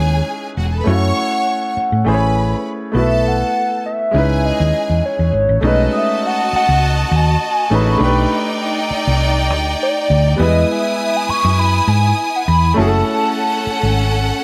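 Soul at 101 BPM in 4/4 with a light sixteenth-note swing, this smooth, bittersweet clip is cut from a longer piece and moves through rich chords such as C#m9, B13 and Emaj7. A hollow, woody square-wave lead with chorus and vibrato carries the melody in a high register, its detuned tone sustained over a fast attack. Beneath it, a bright string section adds a lush, biting second line that sits distant in the mix, while a clear grand piano with short sustain and a vintage edge supplies the accompaniment. The hollow-body bass is the most up-front part, round and amped, anchoring the low end throughout. A mellow vibraphone played with soft mallets drifts in only briefly, first at 1.1 seconds and again from 5.9 to 8.3 seconds, adding an airy metallic ring in the background. Light reverb and studio ambience frame the whole performance, with the harmony shifting toward a dominant-driven second half from 5.6 seconds.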